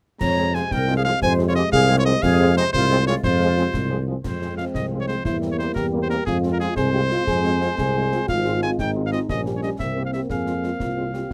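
In a straight 6/8 at 119 BPM, this stern, martial F minor wind-band march sets a clear cornet with light vibrato up front on the melody over a roomy tuba bass, dark trombone chords, mellow French horn accompaniment and background concert snare, clash cymbals and bass drum, while an airy, hollow flute section plays a second line until 4.0 s and a warm, distant euphonium takes up that role from 4.2 s, closely miked with little reverb.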